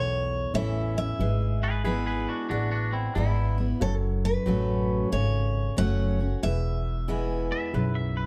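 A nostalgic, sunny honky-tonk country excerpt opens with a full-bodied picked steel-string acoustic guitar carrying the melody over a second picked acoustic guitar, a woody, up-front pizzicato upright bass and a dark, mellow upright piano with audible action noise in the background, all moving through a swung eighth-note feel, while a clean, twangy electric guitar with tape echo adds a bright second line from 1.6 to 3.6 seconds and again at 7.5 seconds, all set in a light reverb with a dark, warm production.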